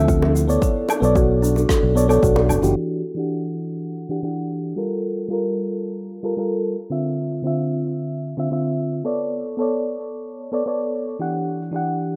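A soft, round FM electric piano sits up front in this relaxed, smooth sunset chillout excerpt at 112 BPM in E minor, its chords colored by chorus, delay and a darkening low-pass filter. The opening bars pair it with a fingered electric bass, woody kalimba arpeggios ringing through delay, an overdriven electronic kick with a deep, layered punch, and tight, high-tuned bongos. That fuller groove falls away before 2.8 s, when a filter sweep on the electric piano begins and carries through to 12.2 s. A natural-sounding shaker, woodblock and rim click keep time underneath all the way. Rich minor ninth chords move through Dm9, Bm9, Em9 and Gm9, and the rough home-demo mix with light room reverb gives the whole excerpt an intimate, hazy feel.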